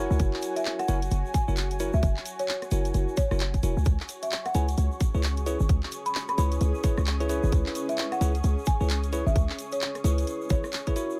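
A punchy, sine-based 808-style bass with a fast attack and a decaying tail sits up front alongside a tight electronic kick, anchoring this moody, late-night two-step UK garage groove with its swung sixteenth-note shuffle. A garage kit of handclaps, rim clicks and hats, re-recorded in a small room, joins the kick, while a grainy, vintage egg shaker ticks away in the background. A bell-like tine electric piano plays clean, bright stabs through tape echo. From 0.6 seconds a woody marimba struck with soft mallets carries the melody, its rustic, rounded tone roughened by 12-bit sampler grit and trailed by tape echo. Throughout, an airy, breathy pad holds soft chords and a blurred, evolving granular cloud pad drifts through its own reverb, both pumping with sidechain, as the harmony moves from F#7 to C#m7 in a digital ambience before the bass drops out at 10.6 seconds in this section cut from a longer piece.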